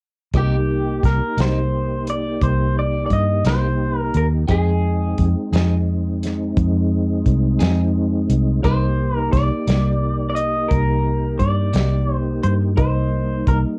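At 0.3 seconds, a brooding slow blues in C minor opens at once: a round, foam-muted fingered electric bass sits up front, a soul drum kit with a tight kick, medium-tuned snare, hi-hat and a rolled-off top plays in a small room, a clean picked electric guitar with tremolo adds accompaniment, and a boxy, very quiet concert grand piano sits far beneath the other parts. At 0.4 seconds the lead arrives, an electric guitar through a small old amp, slightly broken-up, compressed and lo-fi with harmonic tremolo, singing a soulful melody between G4 and Eb5, while a mellow, flute-like tonewheel organ holds sustained chords through chorus vibrato and a slow rotary speaker. The tempo is 58 BPM in a straight 12/8 feel, and the harmony moves from Cm7 to Fm7 and back to Cm7. The clean guitar drops out at 12.0 s, leaving the organ and piano to ring on to the end of this short cut from a longer piece. Light reverb and the cassette-tape character on the drums and lead guitar give the home recording a dark, intimate haze.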